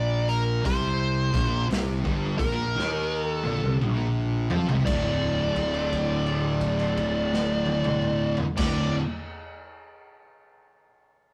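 A dark, wah-inflected fuzz lead guitar sits up front in this brooding, ominous stoner and doom metal excerpt, crawling at 57 BPM in 4/4 with a swung feel. The harmony moves from Bb5 to D5 at 4.9 s, where a long held note takes over. Beneath it, two thick, distorted rhythm guitars grind out the riff, one pushed into the background, while a growly, bright overdriven fingered bass sits up front. A raw garage drum kit plays with a boomy kick, gritty saturation and a rolled-off top, and takes a fill from 2.8 s, all captured as a rough rehearsal-room recording in a moderate stone-room reverb.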